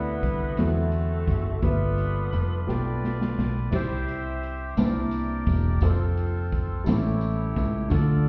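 A raspy, growling tenor saxophone with slapback echo opens this hopeful slow gospel fragment in 6/8, alongside a reedy, nasal melodica, a concert grand piano with a deep low end and a punchy, up-front fingered electric bass; the sax drops out at 3.0 seconds as a drum fill on an airy big-band kit carries into the second section at 3.7 seconds, where a faint, jingly tambourine joins in the background, the whole mix heard muffled through a wall with stone room reverb.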